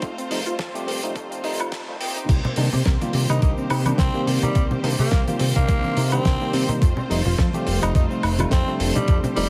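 A sleek, sensual nu-disco groove at 106 BPM in C dorian, with a lightly swung 16th feel, opens on a build-up: a round, detuned analog pluck arpeggio in the background sweeps through a filter, set over a fat, thick sawtooth bass, a thumpy, up-front electronic kick and a dry, damped 70s kit with dark cymbals, a fat snare and woodblock. A distant, lush string section holds sustained chords behind it all, bright and biting with vibrato and a vintage 12-bit sampler grit, while a clean, direct tine electric piano adds accompaniment, both pumping with the sidechain and the piano trailing tape echo. At 2.3 seconds the drop arrives, just after the harmony has moved from F7 to Cm7, and a close tube shaker and congas settle into the background. From 3.3 seconds a raspy, gritty tenor saxophone takes the lead with punchy pop-style phrasing and vibrato, trailing tape echo before the chords return to F7. 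The whole excerpt carries a light reverb and a heavily compressed, radio-like sound.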